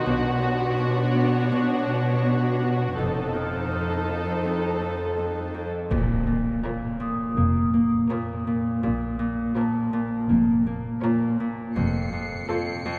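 A fingerpicked Celtic harp sits up front in this mysterious, uneasy cinematic excerpt at 82 BPM in a straight 4/4, playing a low riff beneath two lines of muted, con sordino violins. The violins carry a veiled melody and a second line with vibrato, while a metallic vibraphone with medium mallets and motor vibrato rings softly in the background. Dark, bowed viola, cello and double bass sections join almost at once; the violas add distant accompaniment, and the cellos pair with a lush, soft-edged double bass section to form the bass. The harmony moves from Bmadd9 to F7, then settles into Bb harmonic minor at 5.9 s, where a huge, bright impact lands over a Bbm chord. Near the end, at 11.8 s, the music shifts to F as a close, high violin texture appears, all of it set in a long, wet cathedral reverb.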